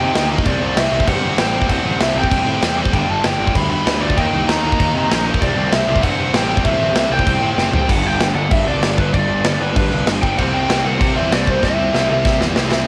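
A straight, driving punk rock pulse comes from an up-front, big-room acoustic drum kit with punchy kick, bright cymbals, snare and toms, breaking into fills around 7.6 and 11.6 seconds in this energetic, rebellious excerpt. A dark, overdriven lead guitar through a small cranked amp carries the melody with analog delay and tape grit. Beneath it sit a growly fuzz bass and a stack of riffing guitars: an overdriven one and a double-tracked high-gain one in the background, the latter dropping out at 7.9 seconds, plus a very quiet sludgy one, all captured in a home cassette recording with studio reverb.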